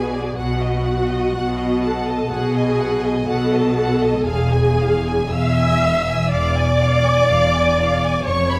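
Dark, up-front violas carry the accompaniment in this lyrical, serene 8.6-second excerpt of a slow romantic classical movement for string orchestra at 62 BPM in a rubato 4/4, as a focused violin section sings the melody alongside a more distant second violin line, rich cellos and close double basses supply a lush bowed bass with vibrato, and the harmony moves from B7 to E7b9 within a moderate concert-hall reverb.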